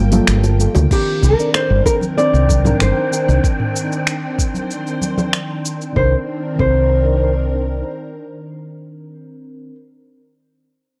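Sunset chillout at 95 BPM in C minor, wistful and smooth, cut from a longer piece where a small, thumb-plucked nylon-string guitar carries the melody up front with analog delay over a mellow FM electric piano treated with chorus and phaser, while a silky string machine holds slow-blooming sustained chords. A round, hollow-toned fretless bass with lush chorus sits forward beneath a tape-softened electronic R&B kit of smooth hats, finger snaps, shaker, toms and crash, joined by ringing, close congas and bongos, with a gentle electronic kick arriving at 0.9 s. An airy, breathy wind-like noise texture drifts in at 1.7 s, the chords move from Gm9 to Cm9, and the gritty cassette-tape recording carries light digital ambience, with the kit dropping out at 5.9 s.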